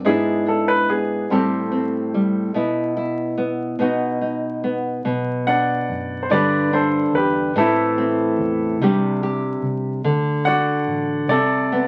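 A clear, polished baby grand piano carries the heartbroken melody up front in this slow, melancholic acoustic folk-pop ballad in 6/8 at 48 BPM, over fingerpicked nylon-string guitar with audible finger squeak, joined at 5.1 seconds by a dark, round, foam-muted electric bass, all set in a wet studio ambience and heard through the crackle and dulled top end of a very old 78 rpm record.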